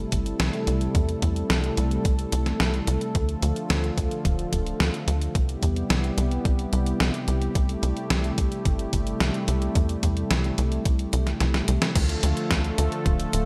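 Nostalgic and nocturnal, this synthwave fragment from a longer piece moves at 109 BPM in A minor, where a smooth, detuned sawtooth pad holds chorused chords that pump against a tight, nasal sequencer bass with a punchy filter pluck, while a clean 12-bit drum machine sits up front with a fat snare, hi-hat and crash in gated reverb over a thumpy, tape-tinged electronic kick, all in light digital ambience, before a drum fill at 11.4 seconds leads into a new section on Dm at 12.0 seconds.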